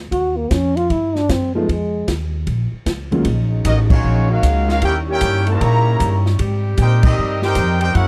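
Dramatic and brassy, this short big band swing excerpt moves at 153 BPM in 4/4, opening with a breathy, scooped trombone solo over woody, thumpy pizzicato upright bass and a polished, airy drum kit with a punchy kick. A warm concert grand piano with audible action noise fills in from 1.6 to 3.2 seconds. Then, from 3.2 seconds, a tight saxophone section holds sustained chords, joined at 3.6 seconds by a vintage-toned trombone section and at 3.7 seconds by a distant, bright trumpet section carrying the melody, with band accents hitting at 3.8 and 7.0 seconds in a dry, close 1970s-style studio sound.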